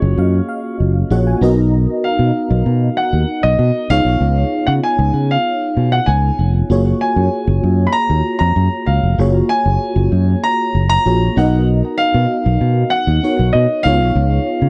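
Polished 1980s jazz-funk pop with a breezy, upbeat mood, where a warm, natural grand piano carries the melody up front over a glassy, bell-like FM electric piano with ensemble chorus that opens with a fill in the first 1.7 seconds before settling into accompaniment, while a growly, punchy fingered electric bass sits prominently beneath, all within a dry, close 1970s-style studio sound with light reverb as the chords move from F#maj9 through Bmaj7 and C#9.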